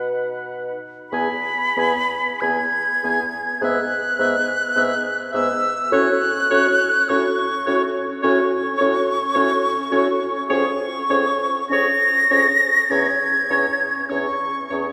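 Classical wind quintet music in a slow romantic movement, this tender, serene passage moves at roughly 45-54 BPM in 4/4 with a flexible, rubato feel, taken from a longer piece. An airy concert flute carries the melody high in its range, close and up front, its soft attack and vibrato giving the line an expressive glow. Beneath it, a clear oboe sings a second line with light vibrato, sitting at a distance in the room, while the French horn with its smooth top and a mellow clarinet tucked in the background fill out the accompaniment. A roomy bassoon with light vibrato supports the texture from below. Recorded in a church or concert hall, the ensemble is bathed in a long, wet reverb, and the harmony drifts from B to E and onward through F#m/A before settling on Db/F at 10.5 seconds and Dbm/Fb at 12.9 seconds.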